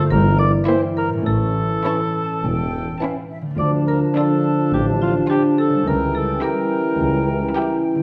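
Heard in a dark, reverberant recital hall, this cinematic excerpt in D minor at 105 BPM has a mischievous, sneaky mood. A woody marimba with hard mallets carries the melody beside a dusky cor anglais, while mellow French horns sustain chords, a ringing concert harp plays arpeggios, and chamber double basses, cellos with portamento and a tuba hold the bass from 0.1 s. From 0.7 s a distant violin section adds a high melody, and an airy flute section, a quiet clarinet, a closer second violin section, a bassoon and violas fill in the inner lines over chords moving from Edim/G through A and Dm to C#dim7.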